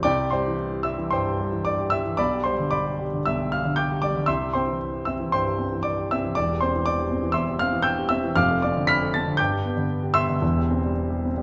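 Set in 4/4 at 115 BPM, the rhythm moves with a supple rubato that lets the pulse breathe freely through this short, 11.4-second fragment of a longer romantic character piece for solo piano. The mood is warm and lyrical, rooted in C major, with the harmony passing from C through G/B and back to C, then C/E, Dm7/F and G before settling on C/E. A single grand piano carries everything, spanning E1 to B6, and its sound is warm, intimate and natural, placed up front with the noise of the action clearly audible. A moderate concert hall reverb, lasting about 1.9 seconds, surrounds the instrument with a gentle sense of space. The top end is rounded off above 7.7 kHz, giving the recording a mellow, warm cast.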